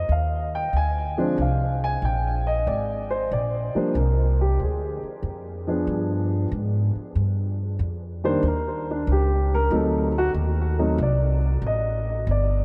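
A dark, mellow grand piano with long sustain and a touch of delay carries the melody up front, then takes a solo from 7.2 s over rich harmony that moves from Ebadd9 through Abmaj9#11 to G7b9 and Dbadd9(#11). Beside it, a woody, thumpy upright bass on gut strings plays pizzicato low lines, also up front. This relaxed, playful jazz piano trio fragment swings at 94 BPM in 4/4 and is cut from a longer piece, its dreamy mix soaked in a huge ambient reverb.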